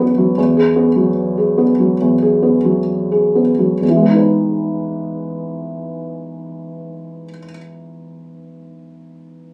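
Hopeful and intimate, this brief classical passage, cut from a longer piece, unfolds with a gently rubato feel in four. A single felt-muted upright piano plays accompaniment throughout, from 0.0 to 9.5 seconds, sounding soft, mellow and boxy, with the thin felt and audible action noise placed up front. The opening phrase slows as it moves through a G#m7/E harmony, then a second phrase arrives at 3.8 seconds, settling onto Emaj7. The playing stays in the piano's low-to-middle register, giving it a close, hushed character. A moderate small-room reverb surrounds the instrument, and the phone recording in the room lends a homely, candid quality.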